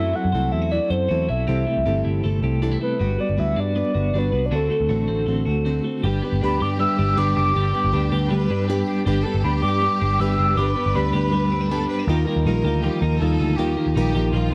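A dark, round, foam-muted electric bass sits up front in this breezy, nostalgic indie pop excerpt at 159 BPM in G major. It plays under a fingerpicked jumbo steel-string acoustic guitar with fresh strings and a bright, twangy twelve-string electric guitar playing arpeggios with tremolo. A soft octave-layered synth lead carries the melody in a triangle-and-sine tone with sub octave, chorus, phaser and vibrato until 11.9 s, while a lush bowed violin section enters at 6.0 s with a smooth second line. Light reverb and vinyl crackle surround the track as the chords pass through Gmaj7 and D7 to G, then turn to Ebadd9 at 12.1 s.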